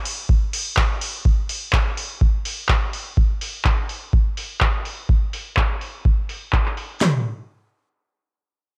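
Acid house at 125 BPM in 4/4 with a gritty, trippy mood, this short cut from a longer piece rides a swung 16th-note feel carried entirely by two analog drum machine parts, both re-recorded in a large room yet sitting up front in a dry mix. One machine lays down a deep kick, punchy snare, toms and handclaps from 0.3 seconds. The other adds handclaps and metallic, low-pass-filtered hi-hats from 0.1 seconds, both parts dropping out around 7 seconds as the passage turns to a new section.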